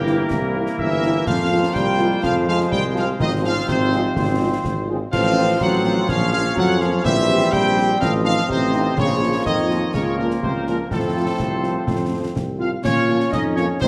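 In a straight 2/4 at 124 BPM, this stern, resolute military-style march for wind band opens in F minor and shifts to Bb minor at 5.1 s, with a bright, tight trumpet section carrying the melody over a clear, distant euphonium and a light-vibrato woodwind section on second lines, soft-attack trombones holding sustained chords in the background, a very quiet, dark French horn section adding accompaniment, and a warm tuba anchoring the bass, while close, dry concert snare, bass drum and clash cymbals drive the beat, all set in a reverberant recital hall in this short excerpt.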